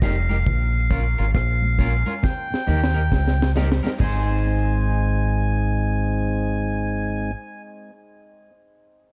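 A laid-back, swung roots reggae groove sits on a deep, round fingered bass up front and a dry, dark drum kit with a high-tuned snare, rim click, hi-hat, tight kick and crash, with very quiet, soft-handed congas alongside, and a drum fill from 2.2 seconds before the drums and congas drop out around 4.3 seconds. Over chords moving from Bbm to Eb to Ab, a reedy, breathy melodica carries the short tape-echoed melody, while a slightly broken-up, twangy electric guitar with spring reverb and tape echo and a mellow tonewheel organ with key click, slow rotary speaker and dub echo fill in the accompaniment. The production is dark and warm, with little room sound, in this brief fragment cut from a longer piece.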